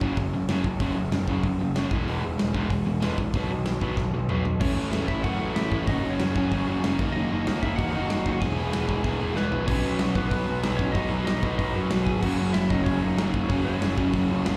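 A fast, rowdy punk rock excerpt at 189 BPM opens at full tilt with a crunchy overdriven guitar riff up front, carrying a slapback echo, while a brighter distorted guitar riff sits in the background beneath it. A fuzz-soaked picked bass growls up front in the low end, and a big acoustic rock kit with bright cymbals, a medium-tuned snare and a tight kick drives the straight 4/4 feel, with fills at 4.0 and 9.4 seconds. At 4.6 seconds a twangy, slightly broken-up lead guitar enters with a compressed, picked melody, also touched by slapback echo. The chords move through F#5, E and B before shifting to A, F#, D#m/F# and back toward B and F#. The sound is that of a live gig heard through a club's PA, with an upbeat energy.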